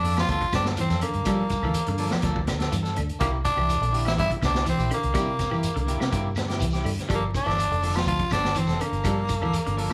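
Hypnotic and defiant, this afrobeat passage at 123 BPM in G dorian sets a raspy, gritty tenor saxophone melody up front over twangy, slightly broken-up electric guitar stabs, a scooped second guitar playing phaser-tinged arpeggios from 0.2 s, a dark, round, foam-muted fingered bass, a vintage drum kit with a punchy kick, a high-tuned snare and a rolled-off top, a grainy shekere in the background and very quiet woody claves, all moving from Gm9 to C7 at 3.2 s and back to Gm9 at 7.1 s as the band plays live in one room with moderate large studio reverb and vinyl crackle.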